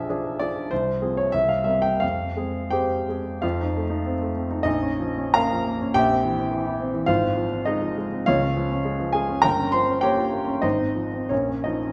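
A clear, intimate grand piano sits up front with its action noise audible, playing a passionate, bittersweet romantic character piece in F minor (tuned to A4 = 437 Hz), cut from a longer work, in a rubato 2/4 that drifts between 78 and 107 BPM, ranging from G1 to C6 in a wet recital-hall reverb, and moving at 3.4 seconds from a brief opening phrase into a longer second section whose harmonies pass through a half-diminished chord near 9.4 seconds.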